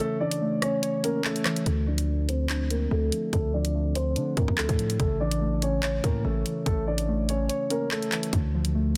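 A half-time drill beat at 144 BPM in D minor sets a cold, ominous mood, its electronic kit of hard-clipped kick, bright hi-hats, rim clicks and handclaps sitting up front with a tape-warm tone, while the kick drops out from 7.5 to 8.3 seconds. A dark, boxy concert grand piano carries the melody over muted, chorused synth keys that move through a filter sweep, as the harmony shifts between A, Dm7 and Dm chords. After an opening break, a heavy, aggressive distorted 808-style bass enters at 1.7 seconds, all under light reverb in a dense, heavily limited modern master in this short cut from a longer piece.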